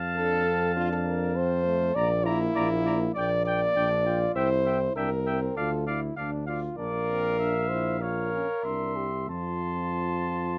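Moving with a flexible rubato pulse in 4/4, this triumphant, stately classical brass quintet passage, cut from a longer piece, sets a vintage-toned trumpet on the melody over a clear flugelhorn second line with light vibrato, while a mellow French horn sitting up front and a soft-attacked trombone with vibrato in the background enter at 0.2 s as accompaniment above a prominent, warm tuba bass, the ensemble heard through close, detailed microphones in light reverb.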